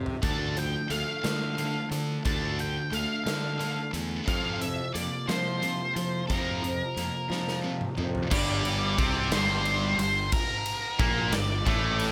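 A dry, close-sounding cut from a dark, cathartic quiet-loud alternative rock piece in a slow 6/8 at 59 BPM. Up front, a punchy big rock kit with a medium-tuned snare in a stone room opens with a fill and sets up a second fill at 7.3 s. A growly fuzz bass anchors the low end and a high-gain distorted guitar plays the riff beneath a dusky octave-fuzz lead that carries the melody over Dm and Fsus4, while a fingerpicked steel-string acoustic with tape echo sits in the background. At 8.3 s the acoustic drops away as the music settles into G minor, and a cranked stack guitar with bright overdrive and a very quiet, double-tracked, biting overdriven guitar join the riff.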